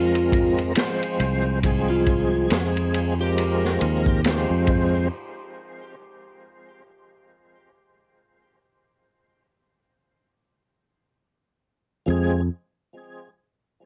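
A brooding, cinematic trip hop fragment opens with an electric slide guitar carrying a short melody over a lightly overdriven tonewheel organ and a direct, up-front fingered electric bass, all resting on an F minor chord. The slide guitar sounds slightly broken-up and is coated in vintage 12-bit sampler grit, cassette tape coloring and tape echo. Its line ends at 3.8 seconds. The organ is warm and full with chorus vibrato, tremolo and a slow rotary speaker, and it shares the same grainy sampler and tape treatment. A crunchy breakbeat kit in a small room joins almost at once with a punchy kick, a medium-tuned snare and dark ride cymbals; its saturated, rolled-off sound has a lazy swing. After a silent stretch from 5.1 seconds, organ and bass briefly return on the F minor chord at 12.1 seconds, and the whole home-cassette recording sits in light reverb.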